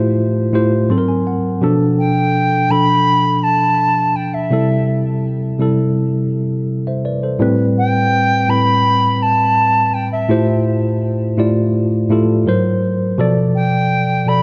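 A worn, slightly out-of-tune tine electric piano opens this sensual, moody R&B excerpt, sitting clean and up front in a small room with light reverb. It plays a brief fill between 0.5 and 1.6 seconds, moving through lush extended chords such as Fmaj9/A, G#9 and G9/B. At 2.0 seconds a silver concert flute enters with the melody, its pure, straight tone and crisp attack carried by a digital delay. The flute stays in a narrow, fairly high register and sounds expressive and metallic above the piano's harmonies. Its lines float over a slow, unhurried progression through C6, Am9 and Dm11/A before the G#9 and G9/B colours return near the end of the cut.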